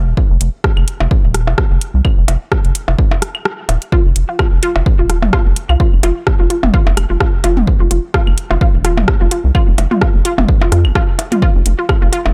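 A rubbery, nasal square bass with sidechain pumping opens this quirky, hypnotic minimal techno excerpt at 128 BPM with a swung 16th feel, soon joined by a punchy electronic kick from a large room, a garage kit of metallic hi-hats and rim clicks, and small-room electronic claves, blips and toms, and after a brief break a squelchy, bright blip pluck enters at 3.9 s on F4, colored by chorus, tape echo and its own sidechain pumping.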